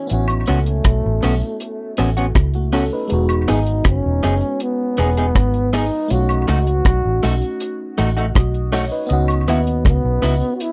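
A straight 4/4 lovers rock groove from a dark, tight reggae kit of kick, hi-hat and rim click and a round, punchy, foam-muted fingered bass carries a breathy, whispered trombone melody with vibrato and tape echo over glassy, bell-like FM electric piano chords colored by chorus, phaser and slapback echo, slightly broken-up guitar stabs, and a faint woodblock and tambourine layer, all in a dry, close 1970s-style studio sound that feels smooth and romantic.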